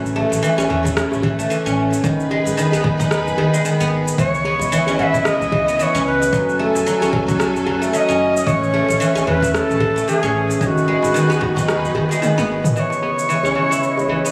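Silvery, fingerpicked guzheng arpeggios ring up front over veiled, muted strings with sidechain pumping, a round analog bass, an overdriven deep house kit with cabasa, rim click and toms, a punchy electronic kick and a soft, dry djembe in this meditative, hypnotic organic downtempo excerpt at 112 BPM with a swung 16th feel, as an airy, bright cedar flute with chiff and tape echo enters at 4.2 seconds over chords moving from A through G#m, C#m7 and F#madd9 to Amaj7, with a drum fill at 12.2 seconds leading into a new section.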